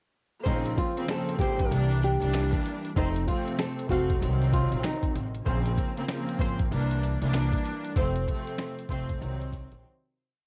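A reflective, tough boom-bap hip-hop piece at 96 BPM opens at 0.4 s with a lush, bowed string section playing chopped chords and a dark saxophone section stabbing in the background through tape echo, both carrying a cassette-tape grain. A woody pizzicato upright bass with slides and chromatic approach notes, a muffled, thumpy sampler-style kit with a fat snare and swung sixteenth-note hats, and a fingerpicked nylon-string guitar looping a short melody until 5.1 s all join together, while very quiet finger snaps mark the backbeat. In Bb harmonic minor, the looped hook cycles through Bbmadd9, C7, F and Cdim before fading out from 8.0 s into a brief break, all set in light reverb with a home-cassette character.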